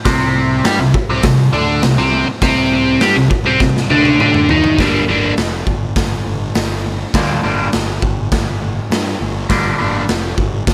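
Garage rock with a swaggering, gritty attitude, this short cut from a longer piece moves in a straight, steady stride. A biting, double-tracked overdriven guitar sits up front with a bright, picked riff colored by phaser, and it drops out at 10.0 seconds while the rhythm section carries on briefly. The raw acoustic drum kit sounds saturated and punchy, with hi-hat, a medium-tuned snare, kick and toms ringing in a stone room that pumps. A drum fill from 3.6 to 4.8 seconds leads the harmony from a C5 power chord into G minor as a new section begins. Underneath, a dark, round fuzz bass, picked and overdriven, adds a low growl with a direct-and-amped tone. Light reverb frames the whole loud, rough-edged mix.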